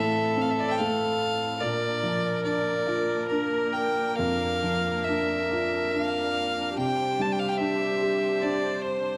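Heard through moderate concert hall reverb in a dark production, this tender, pastoral Celtic slow air unfolds in rubato 3/4 at 68-74 BPM: a biting, intense fiddle with light vibrato sings the melody up front, a pure, floating sul tasto viola traces a second line, a soft, muted felt upright piano gives an intimate accompaniment, and a smooth-topped symphonic string section holds sustained chords in the background over Fmaj7/A, Bb and Csus2 for the 9.2 seconds cut from a longer piece.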